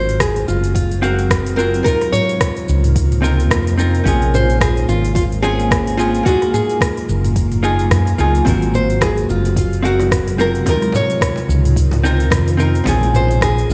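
Sunset chillout at 109 BPM with a smooth swing, where a full-bodied, fingerpicked nylon-string guitar carries the melody with tape echo over a dark, clean hollow-body jazz guitar, an ethereal, detuned pad with chorus and phaser sitting in the background, a round, up-front hollow-body bass, a produced R&B kit with metallic hats, rim clicks, shaker and toms, and a soft, tape-warm electronic kick, while ringing high-tuned congas slip in at 8.5 seconds, all set in a stone room over chords moving from Ab13 through Dbmaj13, Bbm9 and Gbmaj13 in this excerpt from a longer piece.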